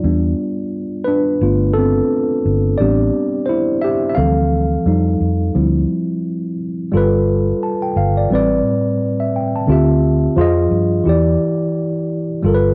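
A lazy swung 4/4 groove carries this hazy, nostalgic lo-fi hip hop fragment, cut from a longer piece, with a repeated passage moving through jazzy chords such as Em7, G9, Am11 and Dm11, and a darker turn to Fm7 near the end. A worn, slightly out-of-tune tine electric piano sits up front with a clean, direct tone colored by cassette tape, taking a solo for the first 6.9 seconds over a dark, round, punchy foam-muted electric bass that is also close and amped. The home cassette recording has a muffled, dulled top end and a small room's moderate reverb.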